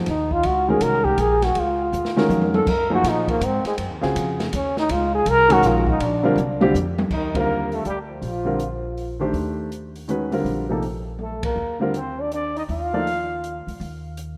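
Swinging in 3/4 at 162 BPM, this hypnotic, spiritual modal jazz excerpt opens with a clear, up-front trombone solo over woody upright piano, thumpy pizzicato upright bass and a dark, boomy-kicked drum kit that adds fills, before a breathy, whispered trumpet joins at 7.1 s as the harmony moves from Gb lydian to Eb lydian, the rough home-demo mix bathed in a lush hall reverb.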